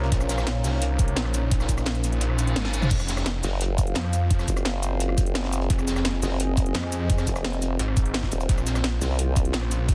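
A snarling, distorted saw bass growls up front from the first moment, set over a dark analog pad with chorus, phaser and sidechain pumping, a deep ambient pad soaked in its own reverb, and a crunchy, gritty breakbeat kit tucked in the background with a rolled-off top. This fragment of dark technical drum and bass feels mechanical and dark, moving in a straight four from a Bbm chord to Fm at 2.9 seconds and back to Bbm near the end. A knocking electronic kick sits up front, joined by a second drum and bass kit with a cracking snare, metallic hats, rim clicks, shaker, toms and crash, both carrying a tape-like, small-room character. Around 2.2 seconds the kick drops out while a reverse cymbal sounds in the background and a short drum fill leads back in. From 3.4 seconds a formant-sweep wobble bass with chorus and tube saturation joins the distorted saw bass in the low end. The whole thing sits in a light digital ambience under a dense, heavily limited modern master.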